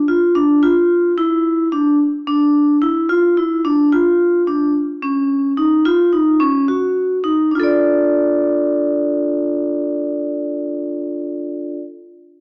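Progressive instrumental at 109 BPM in 5/4, intricate and driving, carried by a solo vibraphone played with hard mallets and motor off, its metallic, ringing tone placed up front in a boxy small room with moderate spring reverb, moving from Dmadd9 to F#5 at 4.7 seconds and settling on Dm at 7.5 seconds, all heard through the small-speaker sound of a cassette home recording cut from a longer piece.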